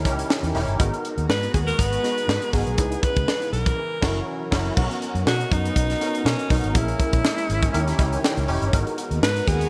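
Bright 1980s-style digital production with light reverb and a small-room ambience frames this urban, glossy jazz-funk pop excerpt in B major at 121 BPM, with a gentle 16th-note swing. A breathy, close-miked alto saxophone sings the melody with vibrato over a worn, slightly out-of-tune tine electric piano that is lightly overdriven and chorused and plays a fill at 7.7 seconds, while a thick, detuned unison pad with slow attack, chorus and phaser sustains lush chords in the background. Underneath, a dark, round, foam-muted fingered bass and a tight, up-front funk kit with a high-tuned snare drive chords such as D#7b9, G#m9 and Bmaj7, with the full band hitting an accent at 3.8 seconds.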